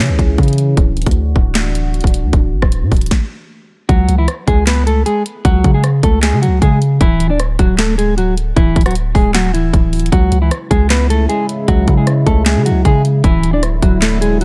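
A dark analog pad with a chorus effect holds moody, detuned sawtooth chords over a deep, sine-like 808-style bass, and an up-front trap drum kit with a hard-clipped kick, sharp snare, bright hats, handclaps and rim clicks soon joins this menacing half-time hip hop excerpt at 154 BPM in C# phrygian. After a stop, a clean, fingered electric guitar enters at 3.9 seconds with a low-pass filtered melody over chords moving through C#5, Dadd9 and C#m. The pad returns at 10.6 seconds in this hard-hitting, dry mix.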